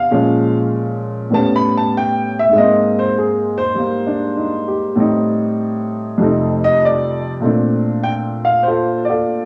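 Solo jazz with a swinging, warm mood at 98 BPM in 4/4, featuring a baby grand piano, open in tone with long sustain and placed up front, playing alone across a range from F2 to B5 through chords such as Bbm7, A9, Abmaj9 and F9 before moving into a new section on Bbmaj9 at 7.4 s, all captured as a cassette home recording with light studio reverb and a small-room ambience, tuned to A4 = 441 Hz, in this brief fragment cut from a longer piece.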